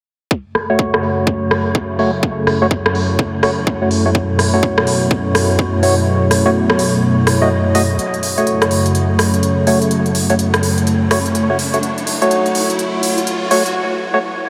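Bass house at 125 BPM in F# minor with a swung sixteenth feel, this gritty, bouncy cut from a longer piece sets a bright, detuned sawtooth pad with sidechain pumping over an overdriven, tight electronic kick that drops out at 5.7 s, crisp hats and rim clicks from a tape-tinged garage kit re-recorded in a large room, hollow organ stabs with cassette tape coloring and tape echo, a deep, moody sub-octave ambient pad in the background, and an electronic riser entering at 10.3 s to build toward a break at 13.7 s, inside a dreamy mix soaked in long reverb.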